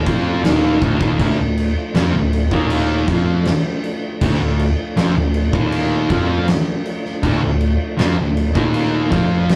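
A thick fuzz guitar sits up front with a dark, distorted, picked riff in D phrygian, joined by a second fuzz guitar riff further back whose tone is warm. This is sludgy, heavy stoner and doom metal at 80 BPM in a straight 4/4, a short cut from a longer piece that holds on a D minor chord for its roughly 9.6 seconds. An oversized, low-tuned drum kit also sits up front, with a punchy kick, a fat snare and dim crash cymbals, its gritty sound carrying a rolled-off top and the ring of a bright stone room. A fingered electric bass, round and amped, stays very quiet underneath, while a tonewheel organ holds sustained chords in the background, clear and lightly overdriven, with key click, chorus vibrato and a slow rotary speaker. The whole take has the rough character of a rehearsal-room recording, with tube saturation and moderate studio reverb.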